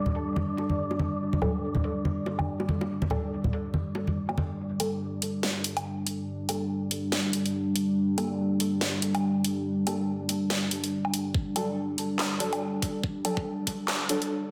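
A half-time 4/4 groove at 142 BPM with a 16th-note swing drives this dark, cavernous deep dubstep passage, cut from a longer piece, where a layered dubstep kit of huge snare, handclaps, hi-hat and woodblock sits up front alongside close acoustic congas and bongos that play only until 4.5 s. A moody, detuned sawtooth pad with chorus holds sustained chords throughout, an airy, breathy wind-like noise texture lasts until 4.6 s, and from 1.4 s a muted, mellow filtered dub chord stab plucks through phaser, lush chorus and dub echo. A build-up runs from 4.6 s to the end, with a knocking electronic kick arriving at 11.3 s, all set in a wet digital room and a dense, heavily limited master.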